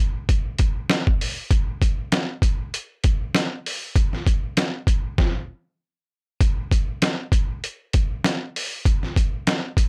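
A trip hop sampler-style drum kit comes in at 0.3 seconds, its hi-hat, thumpy kick and medium-tuned snare sounding gritty, compressed and pitched down, and set up front. This is a moody, dark hip hop fragment cut from a longer piece, moving at 98 BPM in 4/4 with a 56% swing on the sixteenths. The drums carry the whole recording, sitting in a light reverb that adds a touch of space around their sampler-style grain. At 5.2 seconds the groove stops, leaving a brief gap until 6.4 seconds, when a second section begins and the kit runs on to the end at 9.9 seconds.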